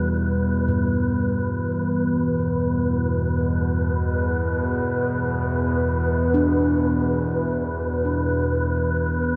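Ambient piece in free time, cut from a longer work, with a desolate, dark mood set in a huge, wet reverb space. A detuned, warbling analog drone with chorus sits up front, evolving in the low register, while a breathy, wind-like tuned noise texture hovers above it with its own reverb. Gamelan-type bossed gongs play arpeggios in the background, their bronze, beating tones trailed by tape echo throughout the 9.4 seconds.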